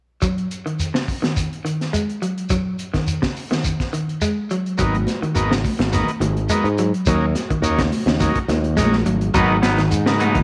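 A growly, bright fingered electric bass sits up front from 4.8 seconds in this hypnotic, driving afrobeat excerpt, arriving together with a buzzy combo organ with light vibrato and distant high-tuned congas in the background. They join a slightly broken-up picked guitar playing arpeggios through a small old amp, a gritty, dark breakbeat kit with a tight kick, and a grainy shekere. Twangy guitar stabs at the edge of break-up then arrive at 9.3 seconds after a drum fill, the whole set in a moderate echo chamber.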